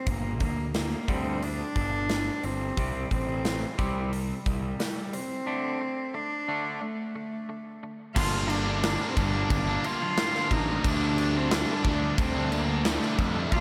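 Quiet-loud alternative rock at 89 BPM in 4/4, dark and angsty, cut from a longer piece that settles into G minor from 8.2 seconds. A rich, floating cello carries the melody up front throughout, bowed sul tasto by one player with a soft attack and a touch of slapback echo. At the start it is joined by a bright, twangy clean guitar playing arpeggios until 8.1 seconds, a growly fuzz bass, and a big, punchy acoustic drum kit with bright cymbals, with a break from 5.5 to 8.2 seconds. At 8.2 seconds the loud half arrives as three overdriven and fuzz guitars stack a riff, two of them in the background, one of those with spring reverb, and the third double-tracked and very quiet, while a mellow tonewheel organ with key click and slow rotary speaker holds chords barely audibly beneath. A lush hall reverb gives the whole an arena-sized sound.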